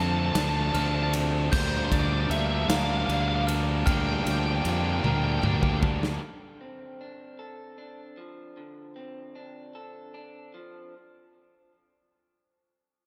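A slow 6/8 pulse at 51 BPM, counted in dotted quarters with a straight feel, carries this cinematic, cathartic post-rock fragment in D minor, cut from a longer piece. A biting, overdriven lead guitar states the melody high over Dm7 and Gm7/D, while two bright, picked, overdriven guitars play a riff together, one carrying spring reverb and the other compressed in the background. Underneath, a growly fuzz bass sits up front, and a big rock kit with punchy kick, medium-tuned snare and bright cymbals enters at 0.4 seconds and plays a fill from 5.0 seconds. A dark, bell-like glockenspiel struck with brass mallets adds delayed arpeggios high above, and a slightly broken-up, lo-fi guitar through a small old amp plays arpeggios through spring reverb and delay. At 6.2 seconds the band drops out on a return to Dm7, leaving that lo-fi guitar alone until 10.9 seconds in a small room with light reverb.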